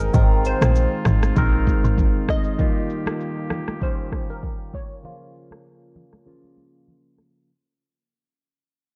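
A woody, punchy log drum bass sits up front for the first 2.1 seconds of this breezy, romantic afrobeats piece at 98 BPM, where a deep-kicked electronic drum kit with rim click and shaker, very quiet high-tuned congas, a barky tine electric piano through phaser, soft mellow brass chords and a glassy, detuned wavetable pluck melody with chorus move through Ab, Ebadd9 and Bbm in a dark, low-passed mix that fades out throughout and drops into a break at 5.0 seconds.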